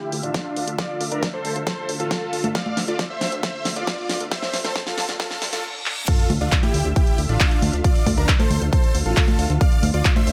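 Set in light reverb and a digital ambience, this bittersweet, soaring uplifting trance passage builds for its first 6.1 seconds, with a drum fill, a filter sweep on the huge, detuned supersaw lead and a reverse cymbal, before dropping into a punchy, up-front groove. The supersaw carries a euphoric, airy melody over a silky, string-like analog pad that sits in the background with ensemble chorus, while a funky, plucky sawtooth bass and a big-room kit with congas, handclaps, hi-hat, crash and a massive snare pump with sidechain alongside a layered electronic kick. Very quiet risers, a reverse cymbal and a sub drop add motion, with an impact marking the drop.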